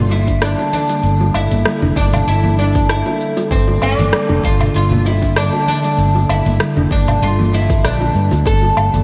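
This organic downtempo passage moves at 97 BPM in 4/4 with a gentle 16th-note swing, sitting in G dorian over a single Gmadd9 chord and carrying a mystical, warm mood. Up front, a plectrum-plucked oud carries the melody with a woody, deep tone from its double strings, touched by analog delay. Beneath it, a warbling, nostalgic pad holds detuned, lo-fi chords with a slow attack and long release, colored by chorus and sidechain pumping. A thumb-plucked kalimba rings out hollow, airy arpeggios in the background through a low-pass filter and its own analog delay, while a round, dark fretless electric bass anchors the low end. The deep house kit joins at 0.1 seconds with metallic hats, cabasa, rim click and woodblock, alongside very quiet, soft-handed bongos and congas, and a punchy, overdriven electronic kick arrives at 0.3 seconds. A lush hall reverb soaks the whole mix in a dreamy haze.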